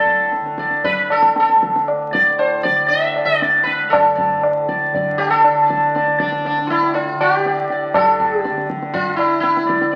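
Introspective and solemn, this Hindustani classical excerpt moves at 119 BPM in a straight 4/4 and gradually speeds up, with a bright, buzzing sitar carrying the melody up front, its sympathetic strings shimmering around a round, plectrum-plucked tone. Beneath it a softly plucked tanpura holds a warm, buzzing drone, while close, low-tuned tabla enters at 0.1 seconds with a ringing voice. The sound has the crackle of a very old 78 rpm record and a wet studio reverb, and the passage shifts into a new section at 8.0 seconds before the cut.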